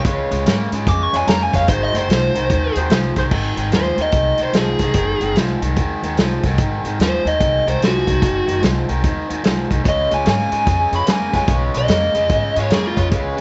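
A biting, overdriven lead guitar sits up front and solos through this soulful, gritty electric blues shuffle excerpt, over a bright overdriven rhythm guitar riff, woody pizzicato upright bass and a muffled, lo-fi vintage drum kit with dark cymbals, while a smooth saxophone section with light vibrato adds tight background stabs until 3.3 seconds and again from 9.9 seconds, all in a small room that sounds dusky and rolled off at the top.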